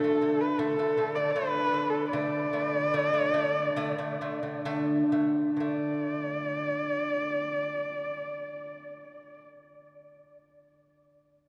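A cavernous cathedral reverb surrounds this short cut from a longer piece of Mongolian folk music in 4/4, vast and galloping at 62-82 BPM and slowing down over the first 5.6 seconds, as a husky, boxy horsehead fiddle carries the melody with vibrato and portamento above a bright, delicate fingerpicked lute playing arpeggios on double gut strings, both parts sounding up front throughout.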